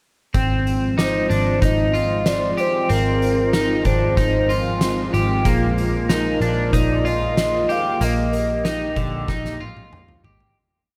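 This short dream pop piece is blissful and dreamy, moving at 94 BPM in a straight 4/4 in Ab lydian, with its single verse shifting from an Ab6 chord to Bb7sus4. An oversized, low-tuned acoustic drum kit sets a simple, spacious backbeat with a fat snare and punchy kick in a bright, pumping stone room. A dark, round, foam-muted electric bass holds a sustained line, while a twangy, slightly broken-up electric guitar sits up front, picking an arpeggiated ostinato through analog chorus and tape echo. Beneath them, a swirling sawtooth pad with a detuned noise layer and slow attack spreads airy sustained chords through phaser and chorus. From 1.0 seconds a hollow, woody clarinet-like synth lead sings mellow call phrases with vibrato, chorus and tape echo, and a very quiet, slightly out-of-tune celesta scatters delicate, bell-like notes, close and dry. The piece begins fading at 8.0 seconds, and a drum fill enters at 9.3 seconds to carry it to the end.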